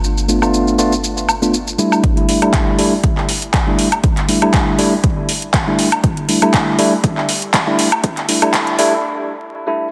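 A swung 120 BPM deep house groove in 4/4 opens with an overdriven, up-front drum kit of handclaps, metallic hi-hats, shaker and woodblock, while a soft, round, woody FM bass pumps under the sidechain on a G9 chord until 1.8 seconds, and from 0.3 seconds a clean tine electric piano plays pumping, delayed stabs through a combo amp. At 2.0 seconds a punchy, layered electronic kick arrives as the harmony moves to Gsus2 and a build-up begins, with a filter sweeping across the electric piano. The sunny, relaxed cut sits in a lush hall reverb with vinyl crackle and a dense, heavily limited master, and it ends on a brief break from 9.0 seconds.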